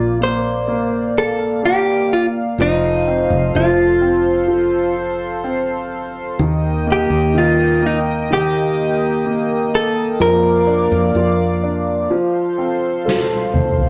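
An up-front clean electric guitar with spring reverb carries the melody of this heartfelt, emotional pop ballad in Bb major at 63 BPM, over a clear concert grand piano, a shimmering chorused pulse-width pad and a round, woody fretless bass, all in a rough rehearsal-room sound with tube saturation, until guitar and bass stop at 12.1 seconds and a soft-mallet drum kit adds a snare and tom fill from 13.1 seconds.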